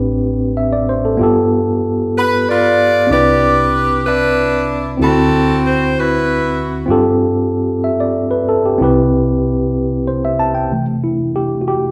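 An edgy, close-miked saxophone section carries the melody from 2.2 to 6.9 seconds, playing as a jazz-style ensemble with vibrato, set up front in the mix. This is a jubilant, uplifting gospel passage cut from a longer piece, moving at 63 BPM in a straight 6/8 in C major, tuned slightly low to A4 = 439 Hz. Underneath, a tine electric piano provides the accompaniment across its full span, its tone worn, slightly out of tune, clean and direct. The harmony moves through rich extended chords, from Am11 and G9 to Cmaj9 and D13, then through G9sus4, settling on Cmaj7 before a closing C6. From 10.7 seconds the electric piano plays alone in a brief closing section. A large studio reverb gives the recording a wet, roomy glow.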